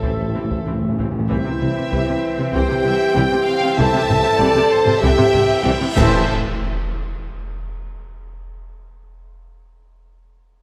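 Epic and heroic, this cinematic orchestral film-score passage moves at 96 BPM, shifting from Am to C, as lush bowed violin sections carry a smooth vibrato melody and a focused second line over clear violas, woody cellos, soft-attack double basses and a tuba, while mellow French horns, tight trombones and distant woodwinds sustain chords and a very quiet trumpet stabs briefly at the start. Heavy-stick taiko drums drive from the start, hard-mallet timpani open with a fill, and bright clash cymbals with concert bass drum join at 3.8 seconds. A huge cymbal swell builds from 5.4 seconds into a band accent and impact at 6.3 seconds, all set in a wet scoring-stage reverb.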